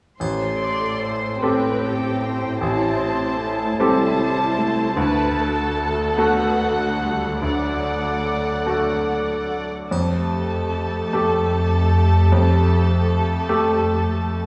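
Moving in a loose, rubato 6/8 at about 49 dotted-quarter beats per minute, this sorrowful, longing cinematic film score in A minor drifts from Am7 through D to Fadd9, cut from a longer piece. A bright, polished grand piano sits up front with short sustain as accompaniment, while a con sordino violin section carries a veiled second line with vibrato, a distant muted viola section fills the middle, and a dark cello section anchors the bass. A soft triangle sounds in the background from 0.2 to 1.8 seconds and again from 9.9 to 11.5 seconds, all set in a reverberant recital hall with vinyl crackle.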